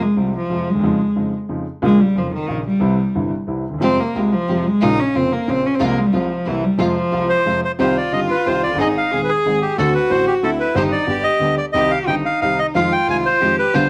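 Close, detailed microphones and light reverb give this passionate, sultry tango in three-time an intimate, present sound, with a rubato feel that lets the phrasing breathe. A clear, intense cello takes the solo through the opening 7.8 seconds, bowed by one player with light vibrato and a smooth top end, sitting up front. Beneath it, a warm grand piano, boxy and close, provides the accompaniment, its action noise audible. From 3.8 seconds a chamber string section adds soft-attack stabs played sul tasto with light vibrato, kept in the background. At 7.3 seconds a reedy, bright bandoneon enters up front to carry the melody, and the cello steps back to a second line; at 7.8 seconds the key moves to C harmonic minor for a new section. This is an excerpt cut from a longer piece.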